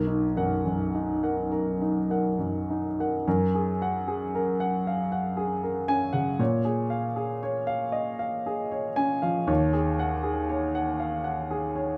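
Luminous and dreamy, this short excerpt of impressionist solo piano drifts in 6/8 at a slow, rubato 33-40 BPM in F# major, its smooth, vintage-toned grand held up front with long sustain in a moderate recital-hall reverb, opening on a Bmaj7 chord before the passage shifts into new material at 3.3 seconds and moves through F#add9, A#m7 and D#m11 chords.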